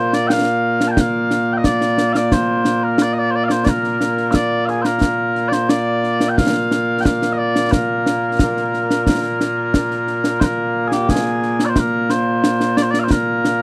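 Proud and stirring, this short cut from a longer piece of Scottish pipe music moves at 89 BPM in a straight 4/4 in Bb major, with mellow small bagpipes carrying a sweet, continuous solo melody with vibrato up front from the start, joined at 0.1 seconds by concert snare and bass drums, close and dry with dark cymbals, all in a close 1970s-style studio sound with light reverb and a change of section at 10.4 seconds.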